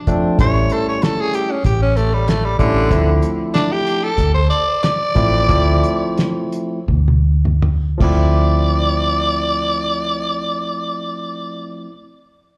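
Straight-eighth soul blues in D minor, this smoky, soulful fragment, cut from a longer piece, moves at 76-95 BPM in 4/4 with a light swing on the sixteenths. A growling tenor saxophone, raspy and gritty with vibrato, takes a jazz-style solo up front from 0.4 s, treated with digital delay and slapback echo. Beneath it, a barky tine electric piano, lightly overdriven with its own slapback echo, comps over chords moving from A7 to Dm7 at 2.9 s, while a vintage foam-muted fingered bass sits round and forward in the low register. The cloth-damped drum kit sounds thuddy and dry, with a fat snare, tight kick, dark cymbals and a rolled-off top, playing a fill before it drops out at 8.2 s. The tempo slows from 2.9 s to 8.4 s, and the whole performance comes across as a live gig heard through the venue's PA, wrapped in small-room club reverb.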